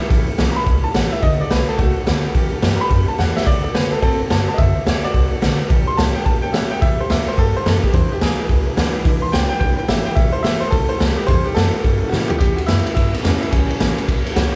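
A band playing live together in a large, moderately reverberant studio room gives this rowdy, upbeat rockabilly excerpt a lively, roomy sound, swinging in 4/4 and cut from a longer piece. A brilliant, woody upright piano with long sustain carries the melody as a solo until 12.4 seconds, backed by a thumpy pizzicato upright bass on gut strings and a full-bodied jumbo steel-string acoustic guitar picked in the background. Up front, a gritty, saturated garage drum kit with a punchy kick and a rolled-off top drives the band, dropping fills at 3.2 and 12.1 seconds.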